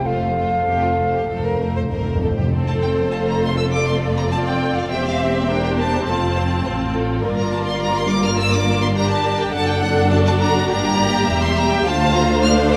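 A spirited, cheerful classical-period movement for symphony orchestra opens with its full body at once: a rich violin section carries the melody while a second violin line, a smooth-topped viola section and an airy flute fill in above and around it, with a mellow French horn section holding a sustained chord. Cellos and double basses join almost immediately to form the bass, the cellos lush and expressive with portamento, the basses soft in attack. A round, close timpani played with soft mallets adds a fill at the start and falls away at 3.4 seconds, after the flute and horns have already dropped out by about 2.2 seconds. From there the strings carry on alone through a quick 103 BPM in 4/4, taken with rubato in F major, the harmony moving from F through C/E and G minor to D/F# and finally Bb/D. Vibrato colours every string section, the melody violins sit at a distance while the second line is close and expressive, and a wet scoring-stage reverb surrounds the whole passage, which is cut from a longer piece.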